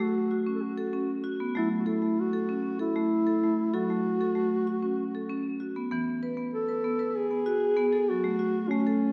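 Set in the lingering reverb of a large scoring stage, this meditative, hypnotic world excerpt in 7/8 pairs a dark, up-front duduk singing a folk-style solo melody with vibrato and scooped notes against bright, percussive, close-miked marimba arpeggios struck with hard mallets, the harmony circling F# minor before moving to E at 5.9 s and returning home at 8.1 s.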